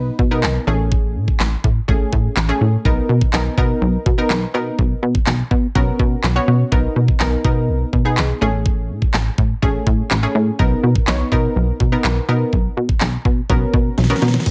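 A bright, detuned analog pluck with chorus and a punchy, wave-folded plucky analog bass open this summery, upbeat dance-pop passage in B major at 124 BPM, both pumping against the sidechain over Bmaj7, Amaj7 and F#add11/B chords, as a tape-warm electronic pop drum kit with a knocking kick, fat snare, handclaps and crash cymbal enters up front at 0.2 seconds, all set in a digital ambience and capped by a drum fill at 14.0 seconds.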